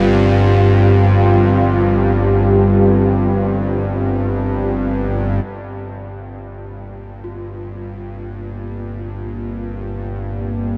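Unfolding in free time, this ominous, vast dark ambient drone is cut from a longer piece and floats in a dreamy mix soaked in huge reverb. A tense, nasal, string-like bowed drone with vibrato sits up front in the low register, beneath a deep, moody pad with chorus and a detuned sawtooth body that moves from a rootless Ebadd9/G to G minor at 5.5 s, where the drone and pad begin fading in. At 7.2 s a soft, bronze gamelan-type metallophone rings in the background with shimmering beats and diffuse delay, playing arpeggios on F4.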